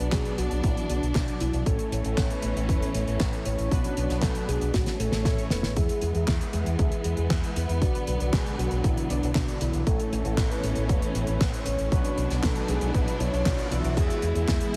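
Through a heavily compressed, radio-like sound in a small room, this danceable, nostalgic italo disco excerpt sets a soft, round octave-layered synth lead with chorus, phaser and delay over lush bowed strings, fat, nasal analog synth brass stabs with a filter sweep in the background, a punchy envelope-filtered fingered bass, a punchy, tape-warm electronic kick and a dry, damped 70s kit with a fat snare, handclaps and a fill at 4.7 seconds, while a very quiet riser enters at 9.9 seconds.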